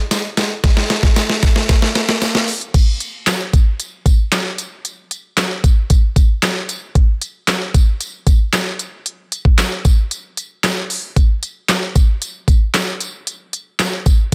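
A straight 4/4 pop groove at 114 BPM opens with a drum fill that builds up to a confident, energetic drop at 2.7 seconds, with a brief break from 10.1 to 11.2 seconds in this clip from a longer piece. Up front, an electronic, tape-warm R&B kit drives the beat with a knocking kick, deep snare, smooth hi-hat, handclaps and crash cymbal. A jingly, compressed and saturated acoustic tambourine sits in the background. The dry mix has a dense, heavily limited modern master.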